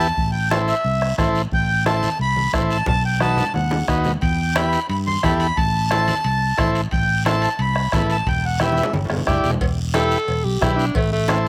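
This danceable, driving cumbia excerpt opens with a reedy accordion up front carrying the lead over a buzzy, overdriven vintage combo organ with light vibrato, both touched with slapback echo. Underneath, a punchy, amped fingered electric bass sits forward, while a raspy guiro, a soft-beater bombo and low-tuned, compressed congas set in the background fill out the groove. Metal-shell timbales and cowbell join at 4.2 seconds, ringing with their own slapback echo, and drum fills break in twice along the way. The accordion stops at 8.9 seconds, and at 9.9 seconds a bright alto saxophone with light vibrato takes the solo in a present, pop-style voice. The sound is dry and close, recorded outdoors with little reverb.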